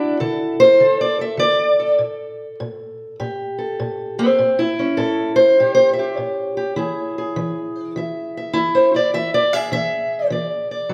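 A fingerpicked steel-string acoustic guitar opens this short excerpt alone, playing laid-back, swaggering acoustic country blues in 4/4 with a swung feel on the eighth notes. The parlour-style instrument sounds dark and boxy, sits up front, and ranges from A2 up to E5. It is tuned slightly sharp, to A4 = 444 Hz. The harmony moves through dominant-seventh chords: D7 at the start, A7 at 2.0 seconds, and E7 at 6.8 seconds, before the fragment ends at 10.9 seconds. The guitar rings in a wet recital-hall reverb, giving the solo performance the spacious sound of a church or concert hall.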